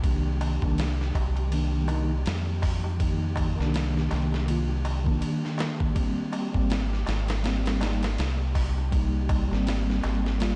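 A hypnotic, melancholic trip hop fragment at 81 BPM in C minor opens with everything at once: a compressed, pitched-down sampler-style drum kit with a thumpy kick and muffled, tape-warm hits sits up front beside a dark, round dub bass, while a mellow tine electric piano with harmonic tremolo and tape echo moves from Cm7 to Abmaj7 at 6.0 seconds. Further back, a deep clay-shelled darbuka and a grainy, flickering, detuned texture with its own reverb drift in the distance. The dreamy mix is soaked in a moderate cathedral reverb and rolled off at the top, giving the cut a hazy, submerged feel.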